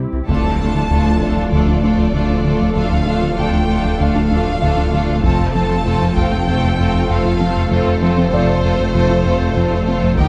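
A cinematic hybrid orchestral and electronic film-score excerpt in D minor at 97 BPM, tense and relentless, moving from Dm to F at 5.2 s over a glassy FM pad, a round analog bass riff, a background cello section and a faint felt-muted upright piano with audible action noise. From 0.3 s a dark violin section carries the expressive melody with portamento, joined by a clear second violin line, rich violas, a lo-fi warbling pluck playing arpeggios, a swirling phased saw bass, a woody and very quiet double bass section, and close, dry taiko bursts struck with heavy sticks. The production is dark and lush, set in a moderate scoring-stage reverb.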